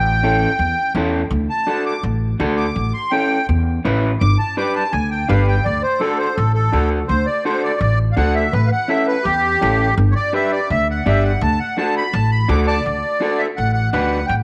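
Set in a moderate echo-chamber reverb, this short excerpt from a longer cumbia piece sounds festive and danceable, riding a straight 4/4 groove. The accordion carries the melody with a reedy, sweet tone and light tremolo tuning, sitting up front and mid-forward, and it takes a solo from 1.3 to 12.9 seconds. Beneath it, an upright bass plucked pizzicato on steel strings gives a woody, warm foundation in its low register. An electric guitar at the edge of break-up fills in accompaniment with a dark, slightly broken-up fingered sound and a warbly pitch drift, entering at 0.2 seconds. The harmony moves among A7, D and G chords in a festive cycle.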